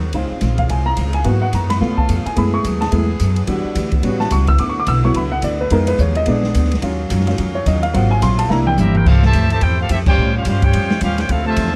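Close, detailed microphones and very little reverb give this brief cut from a longer big band swing piece an intimate, up-front sound at a brisk 215 BPM in 4/4 with a light swing feel. A warm baby grand piano carries a solo for the first 9.1 seconds, its short sustain and audible action noise sitting close to the ear. Beneath it, a woody, thumpy pizzicato upright bass on gut strings drives the pulse, while an acoustic drum kit with dark cymbals, a medium-tuned snare and a boomy kick adds a fill leading into the next section. A bright saxophone section holds soft-attacked, vibrato-laden chords, and a picked steel-string acoustic guitar plays accompaniment in the background through a rich, jazzy harmony. At 8.8 seconds a clear trumpet section takes the melody with light vintage vibrato, joined by a close-miked trombone section on a second line, and the full band hits a brassy accent at 10.0 seconds.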